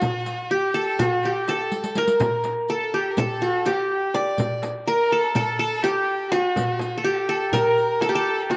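Set in a straight 9/8, this passionate Turkish makam ensemble excerpt is led by an up-front qanun, bright-edged and fingerpicked on triple strings, shadowed by a single bowed violin whose rich, vibrato-laden second line glides with portamento and soft attacks. Underneath, a crisp metal-shell darbuka sounds distant, as if in a large room, while a small frame drum played with soft hands sits close and dry in the background and a riq adds sparkling jingles until 8.1 s. A drum fill breaks in at 1.7 s, and a wet spring reverb lends the whole recording a long, warm tail.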